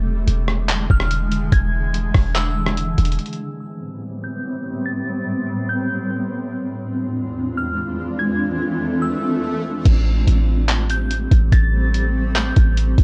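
A cloudy, detuned granular pad with built-in reverb and sidechain pumping opens this ethereal, spacious cloud-rap excerpt in A minor at 144 BPM in a half-time feel alongside a deep, boomy 808-style bass. A muffled, compressed lo-fi drum kit of thumpy kick, rim click, handclaps, hi-hat and crash joins them a moment later. A glassy, warbling FM bell soon floats high above with chorus and digital delay, and the bass and drums then fall away while a filter sweep passes. An electronic swell at 8.7 seconds leads into their return at 9.9 seconds, all within a dark, lightly reverberant production that runs to 13.0 seconds.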